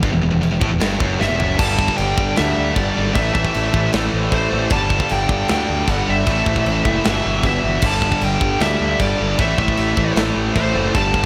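This heavy metal passage in straight 4/4, cut from a longer piece, feels aggressive and epic, with chords moving between Em, G5, Am and Em/G. A tight acoustic drum kit recorded in a studio room drives it with bright china and crash cymbals, a medium-tuned snare, a tight kick and toms, and a drum fill from 1.2 to 1.6 seconds leads into the main section. Three guitars play the low riff together: a high-gain guitar, a distorted one set in the background with slapback echo, and a very quiet fuzz guitar that is double-tracked and compressed. Underneath, a fuzz-soaked picked bass sits up front with overdrive. From 1.2 seconds a dark high-gain lead guitar with delay carries the melody high above. A very quiet section of muted strings adds lush, veiled sustained chords with vibrato, and the mix sits in light studio reverb.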